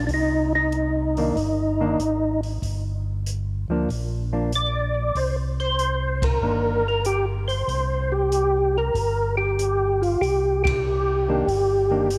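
Soul jazz organ trio at 95 BPM in 4/4, swung eighths giving a late-night, bluesy mood in this excerpt cut from a longer piece. A percussive tonewheel organ carries the melody between D4 and D5, its round, clean tone sparked by third-harmonic percussion and colored by chorus vibrato and a slow rotary speaker, sitting up front. Beneath it, a mellow tonewheel organ holds down the bass from G1 to D2 with the same chorus vibrato and slow rotary treatment, while an acoustic jazz kit of hi-hat, ride and kick sits low in the mix with dark cymbals, a boomy kick and a rolled-off top. A clean, fingered hollow-body electric guitar enters at 1.2 seconds to comp, drops out at 6.8 and returns briefly at 11.3. The harmony moves from Cm9 to Gm7 to C7 with the third omitted, the band hits accents together around 6.1 and 10.5 seconds, and a moderate echo-chamber reverb lends the whole a smoky sense of space.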